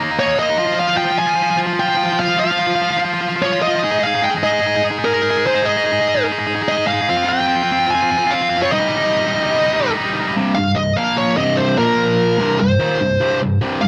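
Dark and relentless, this 147 BPM metal passage in C phrygian, tuned to A4 = 441 Hz and cut from a longer piece, rides a half-time feel until a new section arrives at 10.4 seconds. A bright, double-tracked, tightly distorted guitar picks a riff spanning C2 to Ab4, while a warm, high-gain lead guitar enters at 0.2 seconds with a picked melody between Bb4 and Ab5. Both guitars sit up front in a dry, close 1970s-style studio sound as the harmony moves from Eb5 through Fm and Eb/G before alternating between C5, Bb5 and Cm.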